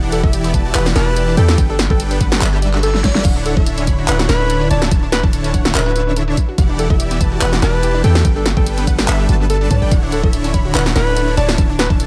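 This euphoric future bass excerpt opens at once on huge, detuned supersaw chords, a deep, boomy 808-style bass with a sine core and noise layer, and two punchy unison pluck parts tucked in the background, playing arpeggios with delay: one wave-folded with a filter sweep, the other bright and ring-modulated. Set at 144 BPM in D major, the music moves in a half-time feel with swung 16ths, cycling through Em9, Gmaj9 and Dmaj9 twice. A breathy alto saxophone carries the solo melody in a jazz style, its vibrato, subtone and smooth top coloured by delay. Beneath it, an overdriven pop drum kit with a fat snare, handclaps, hi-hat and crash sits alongside an up-front, knocking electronic kick, both with the character of a small room. Sidechain pumping makes the bass, chords, plucks and saxophone breathe in rhythm, while a reverse cymbal at 2.6 s overlaps a short drum fill at 2.9 s, all wrapped in a lush digital ambience.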